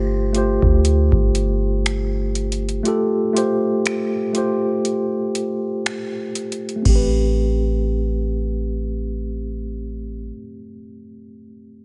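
A mellow, clean tine electric piano carries this moody, longing contemporary R&B excerpt in A minor at a slow 60 BPM with swung 16ths, its low-pass filter sweeping through the first 6.9 seconds as the harmony moves from G9sus4 to Am9, while a deep, dark 808-style bass with a fast attack and decaying sine body booms beneath it, and an overdriven analog drum machine with a deep kick, metallic hi-hats, finger snaps and crash cymbal sits up front until 7.1 seconds, all in a dry, rounded mix.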